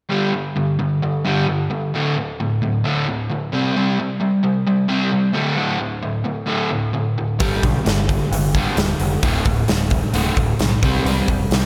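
Gritty and brooding, this classic rock excerpt moves at 132 BPM in a straight 4/4, opening with an overdriven, double-tracked semi-hollow guitar riff, up front with spring reverb and slapback echo, cycling through G5, D5 and C5 power chords. At 7.4 seconds a growling, bright picked electric bass with its own overdrive joins alongside a huge arena drum kit of boomy kick, medium-tuned snare and hi-hat, its pumping room sound pushed forward. A lush hall reverb of moderate depth wraps the mix before the piece cuts off at 11.7 seconds.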